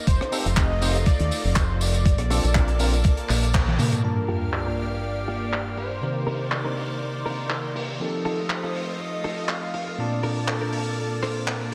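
Nu-disco at 121 BPM in G minor, with a cosmic, sleek mood and a light swing on the sixteenths, taken from a longer piece and bathed in a dreamy hall reverb. A lush, detuned sawtooth pad holds sustained chords with chorus and sidechain pumping, while a thick, bold unison lead with vibrato carries the melody through analog delay, and a barky, bell-like tine electric piano adds accompaniment through analog chorus and delay. The opening four seconds are driven by a thumpy electronic kick and an up-front fingered bass with an envelope filter, both stopping by 4.0 seconds after a band accent at 3.5 seconds and a short drum fill. A crunchy breakbeat kit with handclaps, hi-hat, rim click, tambourine and toms runs throughout, dark and gritty with a rolled-off top. At 4.0 seconds a sub drop lands as the harmony moves from F7 and Bbmaj7 to Gm7 and Cm9, and filter sweeps begin on the drums and on a clean, compressed electric guitar riff that enters in the background at 4.3 seconds.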